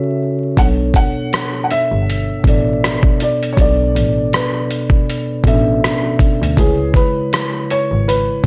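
Lo-fi hip hop in B minor at 80 BPM, this nostalgic, hazy passage is cut from a longer piece and moves in 4/4 with a lightly swung sixteenth-note feel. A dark, woody upright piano carries the melody from the start, intimate and slightly detuned with audible action noise and a tape echo. Alongside it, a mellow tine electric piano, clean and up front, plays the accompaniment with a cassette-tape tint. At 0.6 s a bowed double bass and a dusty sampler-style drum kit join. The bass is close and earthy, its airy bow and light vibrato given bite by tube saturation, while the compressed kit brings a thumpy kick, hi-hat and rim click that sound re-recorded in a large room. The harmony moves from F#m7/C# to a long Bm9 before reaching C#m7 at 6.6 s, all set in light reverb with a dry, gritty hardware sound and vinyl crackle.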